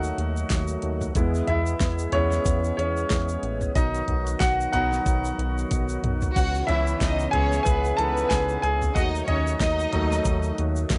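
Dramatic and driving, this piano-driven pop excerpt moves at 92 BPM in 4/4 with a light sixteenth-note swing. A brilliant, up-front grand piano leads with audible action noise. Beneath it sit a percussive, lightly overdriven tonewheel organ with chorus vibrato and slow rotary speaker, a round, deep analog bass, a grainy egg shaker and a layered electronic pop kit with a knocking kick and fat snare that enters at 0.2 seconds. After a drum fill at 5.7 seconds, an expressive bowed violin section adds a second line from 6.4 seconds, all in a lo-fi home cassette sound with light reverb.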